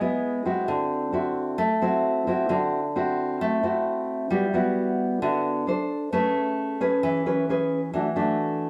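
A nylon-string guitar sits up front and plays alone through this short bossa nova fragment, its acoustic, thumb-plucked tone carrying a classical polish. The mood is sunny and breezy, set in a straight 4/4 feel. The guitar ranges from D3 up to C5, moving through rich, colourful harmony that opens on a rootless C#m7 before passing through D9, G6 and Amaj9. A wet stone room reverb surrounds the instrument, giving it a lively, reflective space. The passage comes to rest on an E9sus4 at 7.9 seconds, just before the 8.7-second cut from the longer piece.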